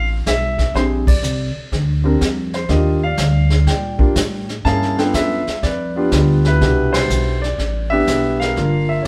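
Relaxed and sophisticated, this jazz piano trio excerpt swings gently at 123 BPM in C major, with a polished, present grand piano carrying the melody over a woody pizzicato upright bass, both up front in a moderate stone room. A vintage brush kit joins at 0.3 seconds with brushed snare, hi-hat, ride cymbal and a punchy kick, its top rolled off and its tone warm. The whole band hits accents at 1.0 and 6.9 seconds as the harmony moves from Dm9 through Bb69, Ebmaj7 and G9 to Cmaj7 before closing on Gm7.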